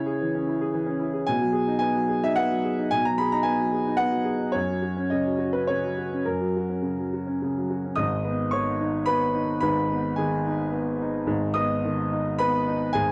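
Neoclassical minimalist piano in a rubato 3/4, melancholic and reflective: a solo grand piano with a boxy, up-front tone and long sustain ranges from deep bass to high treble in a dry, close 1970s-style studio sound, moving into a new section at 8.0 s before this short cut from a longer piece ends at 13.1 s.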